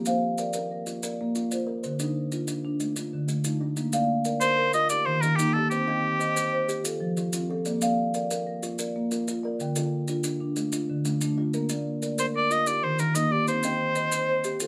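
Southern African traditional music in a hypnotic, rippling mbira-style interlocking cycle, where a hollow, ringing kalimba and a round, rosewood-barred marimba played with soft mallets weave arpeggios over grainy maracas, while a bright oboe with light vibrato sings an up-front classical-style melody from 4.4 to 7.0 seconds and again from 12.2 seconds, all set in a moderate studio reverb.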